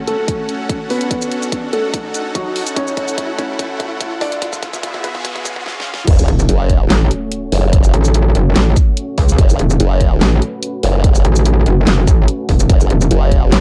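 This chaotic, aggressive slice of heavy wobble dubstep in a half-time feel opens on a lush, detuned supersaw pad holding sustained chords through a low-pass filter with sidechain pumping, while an electronic riser and noise sweep build in the background. A soft, felt-muted upright piano carries the melody up front, its mellow tone veiled by a filter sweep and dub echo, with audible action noise, over a drum fill that drives the build-up. At 6.1 seconds the drop lands with an impact and sub drop, and two saturated, chorused wobble basses enter up front moments apart: first one shaped by a formant filter, then another that is metallic and aggressive with an FM edge. Beneath them, a punchy, layered electronic kick and a dubstep kit with a huge snare, crash cymbal, handclaps, hi-hat and shaker sound as if re-recorded in a small room. The production is dark overall.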